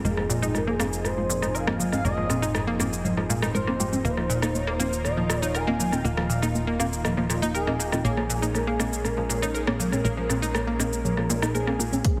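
Expansive and dreamy, this progressive house excerpt in Bb minor moves at 120 BPM over Fm7, Ebsus2 and Bbm7. A smooth, vibrato-touched synth lead sings the melody with delay, over a lush detuned unison pad that carries a filter sweep in the background, a round analog pluck spinning arpeggios, soft chorused and phased chord stabs with a cassette-tape tint, and a tight, punchy sequencer bass, all breathing with sidechain pumping. Overdriven cabasa and bright hi-hats join tape-colored rim clicks and congas in a lush hall with a heavily compressed radio sound, while a punchy kick drum lands only at 12.0 s and a faint riser closes at 12.2 s.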